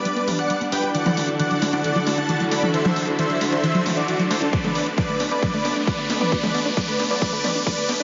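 A huge, detuned supersaw lead carries a euphoric, soaring uplifting trance melody over lush, distant bowed strings and a plucky analog bass, all pumping with sidechain, while a tight sequenced synth arpeggio sweeps through a filter and a dry analog drum machine ticks hi-hats and toms; a background riser enters at 2.2 seconds and an overdriven electronic kick joins a drum fill at 4.5 seconds as this build-up excerpt moves from G through Dadd9 to Bm7, all soaked in a dreamy reverb.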